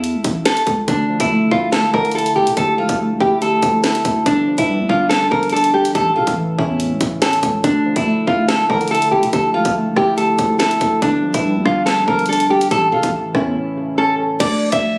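Caught on a phone in a studio room with light reverb, this cold, tense half-time drill fragment sets a bright, fingerpicked nylon-string guitar melody up front over a growling, buzzy 808-style bass and a crisp drill kit of hard-clipped kick, sharp snare, rim click, crash and glittering hats, with muted, felt-like synth keys entering at 0.9 seconds, a soft octave-layered synth lead with phaser and vibrato appearing briefly at 14.4 seconds, and a deep, very quiet ambient pad surfacing at 14.8 seconds as the excerpt cuts off.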